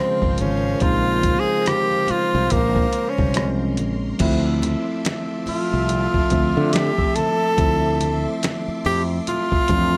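Bathed in digital ambience, this excerpt from a longer piece is a smooth, soulful slice of neo-soul R&B in D minor, moving at a relaxed 71 BPM in 4/4 with a swung sixteenth-note feel. A breathy, close-miked tenor saxophone sits up front with a jazz-style solo built on scooped notes, carrying the melody over a Bbm9 chord until 4.2 seconds, when the harmony shifts to Dm9. Beneath it, a worn, slightly out-of-tune tine electric piano plays accompaniment, lightly overdriven through a combo amp, while a lush sawtooth string machine holds vintage sustained chords in the background with ensemble chorus and a sub octave. A clear saxophone section adds smooth-topped, pop-style stabs with light vibrato. From 0.2 seconds a dark, round, punchy fretless bass joins a gritty, compressed sampler-style drum kit with a thumpy kick, medium-tuned snare, hi-hat, rim clicks, finger snaps and crash cymbal, re-recorded in a large room. 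Very quiet, low-tuned congas ring from a distance, adding a faint acoustic layer.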